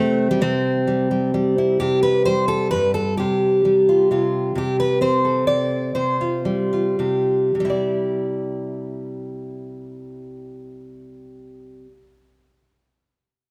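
A fingerpicked steel-string acoustic guitar with a full-bodied jumbo tone plays alone and up front through this 12-second folk piece, cut from a longer work. The mood is hopeful and warm, in C major with a 3/4 metre and a straight feel, the tempo moving between 103 and 133 BPM and slowing down between 4.5 and 7.5 seconds. The harmony rests on a C bass, moving from C through Fsus2/C, Am7/C and back to Fsus2/C before settling on Cadd9 at 7.5 seconds. The guitar spans a range from G2 to D5, and the tuning sits slightly below standard pitch, with A4 at 436 Hz. A moderate reverb, like that of a scoring stage, surrounds the playing, and a faint mains hum sits beneath it.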